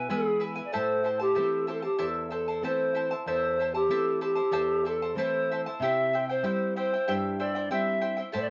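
Heard through worn, warbling cassette tape with drifting pitch and a moderate studio reverb, this short Andean folk passage in A minor moves at 94 BPM in a straight 4/4, its mood both wistful and festive. A reedy, pure-toned pan flute carries the melody up front with vibrato and a soft attack, bathed in plate reverb, while a shimmering, fingerpicked charango with double strings and a warm, classical-style nylon-string guitar, also fingerpicked, accompany underneath. All three play throughout the 8.5 seconds as the harmony passes from E to Am at 0.7 seconds and on to C at 5.8 seconds.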